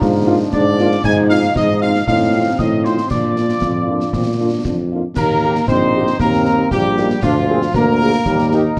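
Proud and rousing, this short cut from a longer military-style march for wind band moves at 116 BPM in a straight 2/4, in E-flat major. A trumpet section carries the melody, sounding distant and roomy with a tape echo, while a clear tuba sits up front on the bass line with light vibrato. Behind them, a euphonium, also with tape echo, and a hollow, wooden piccolo with rolled-off highs play second lines. The trombone section holds dark sustained chords with a smooth top, and a French horn section joins at 0.3 seconds with mellow, vintage-toned accompaniment. Concert snare drum, bass drum and clash cymbals with dark cymbals keep the march going in a live room. The harmony travels from Bb7 over Ab through Fm7 and F7 to Bb, then the second section settles on Eb at 5.2 seconds, all within a moderate studio ambience and a warm production.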